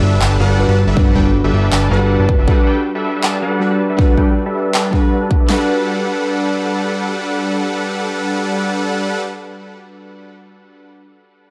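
Future bass at 159 BPM in a half-time 4/4 feel, this bright, lush fragment of a longer piece sits in G major on a single Gmaj7 chord, tuned slightly flat of standard pitch. It opens with an impact and a very quiet sub drop, while a fat, saturated analog bass built from detuned sawtooth and square waves holds a low G under a filter pluck until 2.5 seconds. Huge, detuned supersaw chords carry the riff up front, pumping against the sidechain through a low-pass filter and tape echo as a filter sweep moves across them over the first 5.5 seconds. Glassy digital keys with a sine tone, chorus and tape echo supply decaying accompaniment that continues alone to the end at 11.0 seconds. Layered electronic handclaps enter just after the start, joined by a punchy, big-room dance kit with a huge snare, re-recorded in a small room and placed up front. The whole mix is dreamy and soaked in plate reverb.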